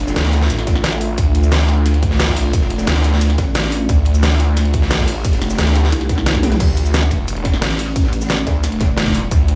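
Futuristic and mechanical, this dark technical drum and bass drop at 177 BPM in D minor surges on a snarling, growling sawtooth bass with tube-saturated distortion and sidechain pumping, over a deep, moody ambient pad with chorus and built-in reverb, while an up-front dubstep kit with a deep snare, cabasa, crash and toms drives alongside a punchy electronic kick and a gritty, saturated breakbeat kit sitting in the background with a high-tuned snare and dark cymbals, as a heavy, detuned pluck wobble bass pulses in briefly at 3.4 seconds and returns from 5.9 seconds just before a band accent and drum fill at 6.3 seconds, all set in a light small-room ambience.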